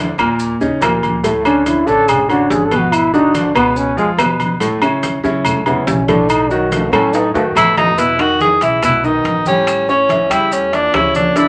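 A smooth, deep-bassed concert grand piano and a thumpy, gut-strung pizzicato upright bass open this sunny, sophisticated Afro-Cuban jazz excerpt at 142 BPM, soon joined by ringing, close agogo bells and timbales, distant woody claves, bright soft-handed congas in the background and grainy maracas, while a mellow trombone with scooped notes solos from 1.2 seconds until a drum fill hands the spotlight to a vintage tenor saxophone with vibrato, up front at 7.6 seconds, the whole set in a wet small room.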